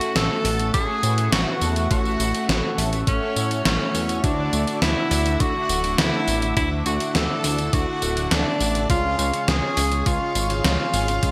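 A clear tenor saxophone with light vibrato, scooped notes and delay carries the melody through this moody, nocturnal synthwave excerpt at 103 BPM, over a shimmering chorused pulse-width pad, a very quiet, bright string-machine violin line, dark synth brass stabs in the background, a faint crunchy overdriven guitar riff, an overdriven, gated 80s drum machine with gated-reverb snare, hi-hat and tambourine, a glossy chorused synth bass entering at 0.2 s and a thumpy overdriven electronic kick joining at 0.7 s, the whole mix sitting in a lush hall reverb with bright 1980s-style digital production.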